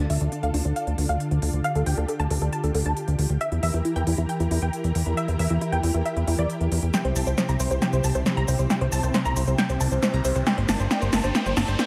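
A punchy, funky analog bass anchors this euphoric yet bittersweet uplifting trance build-up at 136 BPM in D minor, alongside a lush, detuned unison pluck melody with subtle chorus and delay under a filter sweep, a silky, string-like analog pad with ensemble chorus and vibrato, an overdriven big-room dance kit with a punchy snare and crisp hats that breaks into a fill at 6.9 seconds, and a background riser entering at 9.4 seconds, all in a moderate digital room.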